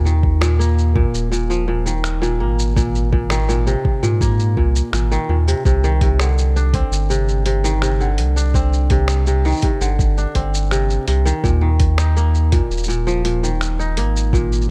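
A dark, intimate digital ambience frames this autumnal folktronica fragment at 83 BPM, where a crisp, ringing kora plays up-front fingerpicked arpeggios roughened by vintage 12-bit sampler grit and delay over a deep, round sine sub bass, a soft overdriven electronic kick and a muffled, pitched-down lo-fi kit of finger snaps, hi-hat and shaker, all moving through Ebsus2, Abadd9 and Cmadd9 before returning to Ebsus2 at 11.4 seconds.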